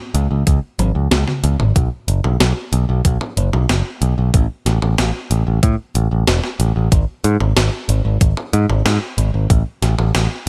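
A straight 4/4 pulse at 93 BPM drives this moody, nocturnal synthwave excerpt: a bright, punchy picked electric bass with tube saturation sits up front beside an overdriven 12-bit drum machine playing hi-hat, a medium-tuned snare and toms, which plays a fill from 0.8 to 1.8 s, while a thumpy, overdriven electronic kick joins at 0.5 s, all in a dry, close mix.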